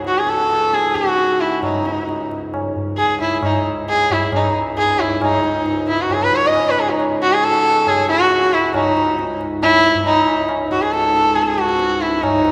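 A nasal, earthy sarangi leads this meditative, longing Hindustani classical excerpt in raga darbari on C#, its bowed line up front with light vibrato, airy bowing, gliding portamento and sympathetic strings. Beneath it, a close-miked pedal harmonium holds a reedy, breathing drone low in the register, while low-tuned tabla in a live room keeps a straight 4/4 pulse that starts around 136 BPM and speeds up throughout. The recording sits in a church-like hall with a long, wet reverb, and the music shifts to a new section at 5.2 seconds.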